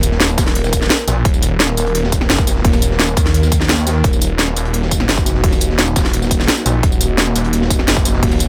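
A snarling, distorted saw bass growls up front from Eb1 to Eb2, its tube-saturated, detuned tone pumping against the sidechain in this dark, mechanical drum and bass cut from a longer piece at 172 BPM in Eb minor. A punchy, overdriven electronic kick enters at 0.4 s beside a produced kit of cracking snare, crisp hats and tambourine, while a very quiet, gritty breakbeat kit with a high-tuned snare sits far beneath. A deep, moody pad holds sustained chords from Bb3 to Bb4 with chorus, reverb and sidechain pumping, and the mix stays dry and loud.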